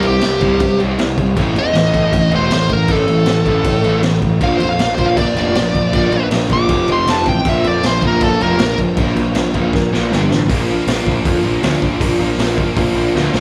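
Punk rock with a rowdy, rebellious edge, caught live through a club PA with light reverb: a smooth, bright overdriven lead guitar with slapback echo and delay sits up front for a solo that stops at 8.8 seconds, while a biting overdriven guitar with slapback echo and an overdriven semi-hollow guitar play riffs in the background, a growly, punchy fuzz bass drives underneath, and a gritty, boomy garage drum kit of kick, snare, hi-hat and crash pushes forward, throwing in a fill at 9.7 seconds before the next section arrives at 10.5 seconds.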